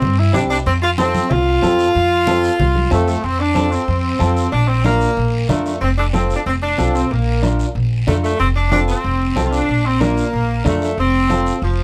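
A brisk 186 BPM cumbia groove in F major, joyful and danceable, set by woody pizzicato upright bass and close-miked saxophone section up front, with bright, damped congas in the background, a raspy guiro, and a slightly broken-up picked electric guitar entering at 0.3 s, all in a moderate studio room as the chords move from C to F and then alternate between F and Bb in this excerpt from a longer piece.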